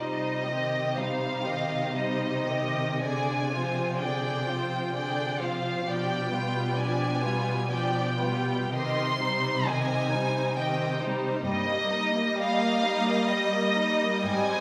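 A solemn, melancholic slow romantic movement for string orchestra opens at once in C minor, with a smooth, vibrato-rich violin section carrying the high melody up front, a focused second violin line, bowed violas filling the accompaniment and a lush cello section anchoring the bass, moving at 64 BPM in a rubato 3/4 through the wet reverb of a scoring stage before turning to Eb major at 11.5 seconds in this fragment cut from a longer piece.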